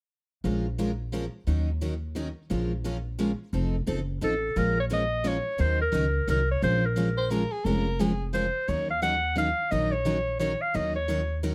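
A swung 3/4 lilt at 175 BPM drives this fiery jazz manouche passage in Bb minor, with two picked steel-string acoustic guitars playing fresh-stringed accompaniment, complete with finger squeak, over a woody, thumpy pizzicato upright bass on gut strings. At 4.2 seconds a bright, punchy clarinet takes the melody up front with light vibrato and a forceful, vintage jazz tone, and between 7.2 and 8.3 seconds a clear soprano saxophone adds a soft-attacked second line with subtone and scooped notes. Light reverb surrounds the quintet as the chords move between Bbm7, Ebm7 and F7.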